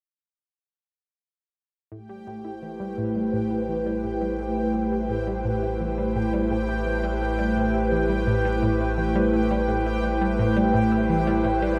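Mysterious and hypnotic, this excerpt from a longer piece of ambient, sequencer-driven space music moves at 85 BPM in a straight 4/4, resting on an A minor seventh chord from 1.9 seconds. An analog pluck carries the riff, its nasal sawtooth tone with a noise layer colored by chorus, phaser and tape echo, while a deep sine sub bass holds A1 beneath it, both fading in from 1.9 seconds. An evolving wavetable pad, detuned and morphing, sits up front with sustained chords from 2.3 seconds, treated with ensemble chorus and its own reverb as a filter sweep moves across it. A bubbling stepped-filter texture with a resonant sawtooth edge enters at 2.2 seconds, its random filter steps drifting high above through chorus and built-in reverb. The whole is bathed in a huge, wet ambient reverb with a long 8.3-second decay, giving the music a vast, floating space.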